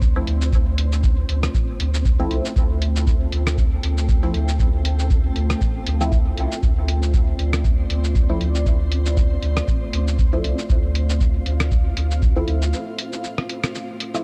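This excerpt of dub techno opens with nearly every layer in place at once, a deep kick, a round sine sub bass, a detuned sawtooth pad and a grainy, flickering texture, joined at 0.2 seconds by muted, nasal chord stabs, all settling on a single Dm7 in D minor at 118 BPM with a light swing on the sixteenths. The mood is deep and cavernous, with the moody, wave-folded pad holding sustained chords that breathe with sidechain pumping under chorus and its own reverb. The sub bass carries a touch of tube saturation and also pumps, while the sawtooth stabs pluck through a filter with a moving notch, phaser, cassette-tape colour and dub echo. A muffled, compressed sampler-style kit of hi-hat, rim click and shaker sits under dub echo beside the analog kick, and the triangle-based granular texture flickers quietly in reverb above them. At 12.7 seconds the bass drops out for a short break, with the kick already gone, leaving pad, stabs, texture and light percussion to close out a dark, close-sounding production.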